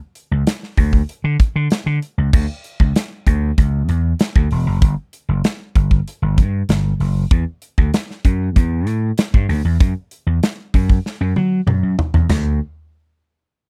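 Polished 1980s jazz-funk pop with a breezy, urban mood, moving at 96 BPM in D major with a straight 4/4 feel. An acoustic drum kit with bright cymbals, a medium-tuned snare and a tight kick sits up front in an airy small room, beside a growly, punchy, amped electric slap bass ranging from E1 to F#3. The close, dry 1970s-style sound keeps both parts immediate, and a drum fill at 11.1 s leads into the brief closing section of this cut from a longer piece.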